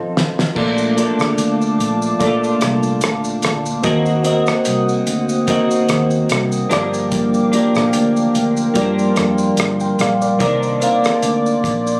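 A lightly swung 73 BPM groove in 4/4 comes from a cloth-damped, thuddy drum kit with a fat snare, tight kick, dark cymbals, hi-hat, crash, rim clicks and shaker, which opens with a short fill before a foam-muted, round and punchy electric bass joins at 0.6 seconds. This sunny, nostalgic slice of indie bedroom pop in Bb major pairs a reedy, worn, slightly out-of-tune electric piano carrying a cassette-tape character with a bright, twangy twelve-string electric guitar dressed in lush chorus and vibrato, while a hollow, flute-like pad with a slow attack holds chords beneath plate reverb. Captured on a phone in the room with light reverb, the harmony moves from F7 through Bbmaj7, Ebm6 and Gm7 to Cm9 in this cut from a longer piece.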